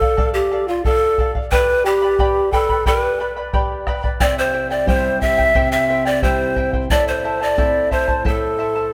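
Recorded with close, detailed microphones in a moderate concert-hall reverb, this short cut from a longer Andean folk piece moves at 89 BPM in a straight 2/4, with a wistful, earthy mood over a Dm, G, C and Am progression. Large cane pan pipes carry the melody up front, breathy and reedy with vibrato and a tongued chiff. A fingerpicked charango adds a shimmering, double-strung sparkle, a dark, compressed and saturated bombo thumps underneath, and a full-bodied nylon-string guitar joins at 4.2 seconds, fingerpicked with audible finger squeak.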